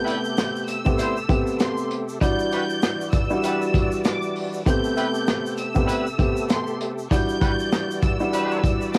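A dark, woody upright piano, a bright, lush violin section playing the melody high up and a reedy tonewheel organ with slow rotary swirl open this gritty, moody boom-bap hip-hop excerpt at 98 BPM in A minor, joined at 0.1 seconds by a crunchy, saturated breakbeat kit up front, mellow jazz-style horn stabs with tape echo and a grainy egg shaker in the background, all steeped in cassette tape, vinyl crackle and light reverb over a swung Am9 to Em9 progression.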